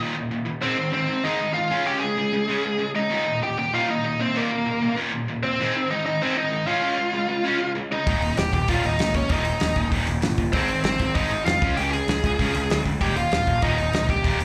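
Upbeat and rebellious, this punk rock excerpt tears along at 194 BPM in Eb mixolydian, captured live through a club PA with dry club ambience. A bright, double-tracked distorted rhythm guitar drives the riff with slapback echo while a bluesy overdriven lead guitar, up front and laced with slapback and tape echo, carries the melody from 0.6 seconds over a cycling Eb, Ab and Db progression. At 8.1 seconds a growly fuzz bass and a loose indie drum kit with a fat snare, tight kick and rolled-off top kick in together.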